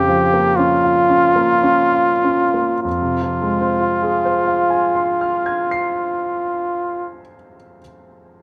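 In a rubato 3/4 at roughly 47-61 BPM that slows through the first 2.9 seconds, this brief, elegiac and melancholic passage of romantic classical music in F minor sets a warm, up-front solo trumpet, sung with light vibrato and a soft attack, over a clear, natural grand piano accompaniment that moves from Bbm/F to Fm at 2.9 seconds and rings on alone after the trumpet stops at 7.1 seconds, all captured closely and in fine detail within a moderate recital-hall reverb.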